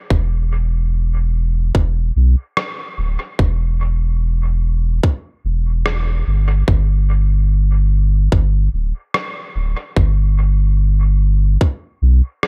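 A deep, round sine sub bass and a tight electronic kick drum open this short fragment of hazy, meditative ambient dub together at 0.1 s, both placed up front. The bass sits very low, its fast attack giving way to sustained, mellow notes. The kick has a produced, tape-warm character and carries the sense of a large room around it along with a small room ambience. At 2.6 s a quieter rim click joins in, sampler-style and compressed, pitched down and muffled, trailing a dub echo through the same small room. The groove sits in 4/4 with a light swing on the sixteenths, and a digital ambience hangs over the whole piece until it cuts off at 12.5 s.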